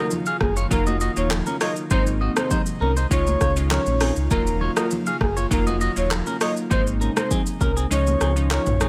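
A straight 4/4 afrobeats groove at 100 BPM in Eb dorian sets a mellow, sultry mood in this short cut from a longer piece, with an overdriven, up-front deep house kit of handclaps, hi-hat, rim click, shaker, toms and a deep kick (muted from 7.9 s) over deep, full sine sub bass entering at 0.4 s, background congas with high-tuned thin skins, glassy detuned digital keys and an airy pad with chorus, a twangy clean electric guitar riff through digital delay, and a soft, breathy flute-like synth lead with vibrato carrying the melody over Ebmadd9, Abadd9 and Dbadd9 chords in a dry sound.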